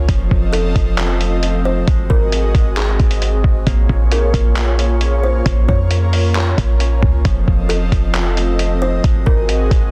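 Atmospheric cloud-rap hip hop in Bb minor at 134 BPM with a half-time feel, spacious and hazy, built on a breathy, detuned pad with chorus and sidechain pumping, background harp arpeggios and a woody, mellow kalimba melody entering at 0.5 seconds, both through digital delay, over a deep, boomy 808-style bass and a muffled, thumpy lo-fi sampler-style kit of kick, hi-hat and handclaps, moving through F7, Ab7 and Bbm7 in a dry, dense, heavily limited mix.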